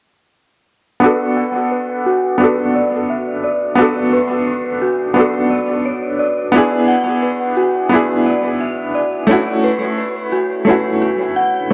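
An echo-heavy mix bathed in moderate spring reverb frames this brooding, smoky trip hop passage in B dorian, moving at 87 BPM in a straight 4/4 and cut from a longer piece. Up front, a clear, woody upright piano with a vintage feel and short sustain plays accompaniment through tremolo, low-pass filtering and tape echo, tracing Bm7, E7/B and F#m7. Behind it, a dark, detuned FM synth bell spins eerie, inharmonic arpeggios with a fast attack and mellow decay, colored by chorus, phaser and tape echo, while a filter sweep runs across it from 1.0 to 11.7 seconds.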